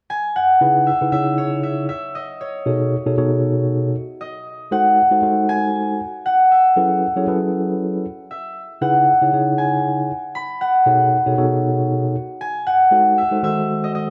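A fingerpicked concert harp carries the melody from 0.1 seconds, its acoustic, ringing tone placed up front and moving between C#5 and B5. At 0.6 seconds a mellow tine electric piano enters with the accompaniment, clean and heard through its built-in speakers, also close at hand. This is danceable, funky music in 4/4 with a light sixteenth-note swing. The electric piano moves through rich chords such as C#m9, B13, G#7b9 and F#m11, then cycles back through the opening changes. A moderate plate reverb and a dark, warm production give the pair a soft glow. The recording is an excerpt cut from a longer piece.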